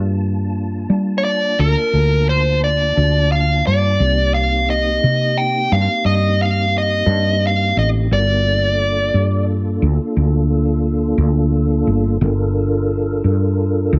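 An overdriven, smooth lead guitar sings a smoky, soulful melody from 1.2 to 9.4 seconds in this slow blues excerpt in 12/8, riding over a growly, round fretless bass up front and a flute-like tonewheel organ holding soft chords through a slow rotary speaker with chorus vibrato and key click, while the harmony moves from Gm9 to Cm7 and back to Gm9 within a light reverb and a dusky, rolled-off sound.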